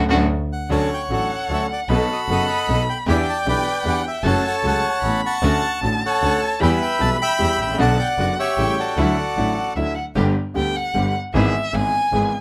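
A band accent opens this elegant, nostalgic tango fragment in three, played with a rubato feel. A bright concert grand piano with deep, brilliant bass carries the accompaniment, while a clear, focused double bass, bowed by a single player, sits at a distance beneath it. From 0.5 seconds a reedy, dark bandoneon takes the melody, dry and up front, with a warm bowed violin tracing an expressive second line full of vibrato and portamento. A very quiet, lush studio string section adds woody stabs. The bandoneon stops at 9.7 seconds, and from 10.2 seconds the violin carries a solo over a brief new section as the excerpt is cut from a longer piece, all set in light reverb with close, detailed microphones.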